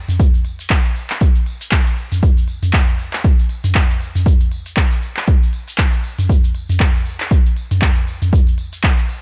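A swung sixteenth-note house groove in 4/4 carries this earthy, warm drum-only fragment, where a punchy, up-front electronic kick leads, a layered deep house kit adds handclaps, smooth hats and toms, and a grainy, bright cabasa with a vintage, band-limited tone sits lower in the mix, all dry, with the kick and kit having a small-room character.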